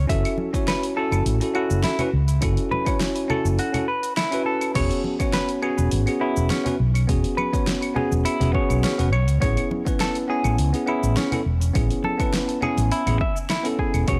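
A clean, fingered semi-hollow electric guitar opens this sunny, blissful sunset chillout excerpt with compressed arpeggios through an analog delay, joined at once by a round, dark fretless electric bass that sits up front with transformer saturation and a lush chorus. A bell-like tine electric piano adds bright, direct accompaniment, also treated with analog delay, while a deep house drum kit and an electronic kick drum settle into a straight 4/4 groove at 103 BPM. The produced, layered drums bring a punchy, overdriven kick and a fat snare, with claves, crash cymbal, hi-hat and shaker dressed in studio reverb. Close, acoustic congas played with hard hands enter at 0.4 seconds and stop at 13.2 seconds. The harmony moves from B7sus4/F# to E6 and then Amaj7, and the overall sound is a dry, gritty hardware recording with little reverb.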